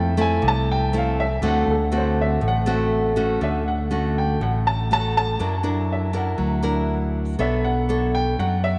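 A straight, relaxed bossa nova groove carries this romantic excerpt from a longer piece, where a natural-toned baby grand piano takes the melody and a solo through the opening 3.4 seconds, a bright, fingerpicked classical nylon-string guitar with audible finger squeak sits up front with the accompaniment, and a growly, amped fingered electric bass anchors the low end, all set in a vast, echoing cathedral reverb as the jazzy seventh chords drift toward a closing Bm9.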